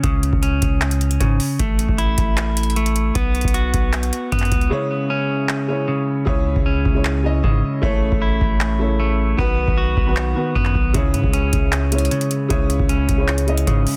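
A clean, picked electric guitar sits up front with compressed arpeggios through a digital delay in this dark, menacing half-time trap cut at 154 BPM in C# minor, taken from a longer piece. Beneath it, a booming analog drum machine with a deep kick, metallic hats and handclaps pairs with a long, sine-toned 808-style bass that hits with a fast attack and mellow decay. At 4.7 seconds a boxy, shadowy grand piano joins over C#m, A and B chords as the hi-hats drop out until 10.9 seconds, all in a dry, dense, heavily limited modern master.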